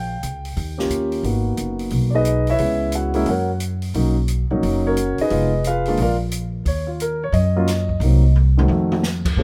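A warm concert grand piano carries the melody up front, its deep bass and long sustain ringing through this moody, cool jazz piano trio excerpt in Eb minor. The tempo is a brisk 177 BPM in 4/4 with a swung eighth-note feel, and the harmony moves quickly through chords such as Abm7, Bmaj9 and Fm7b5 before settling toward F7b9. Beneath the piano, an upright bass played pizzicato sits up front, woody with steel strings, holding down the low end across the whole passage. An open acoustic drum kit with dark cymbals, a medium-tuned snare and a boomy kick sits further back in a natural studio-room sound, coming in at 0.2 seconds. The drums play a fill from 8.3 to 9.0 seconds, and the whole trio is captured dry, with little reverb, as a short cut from a longer piece.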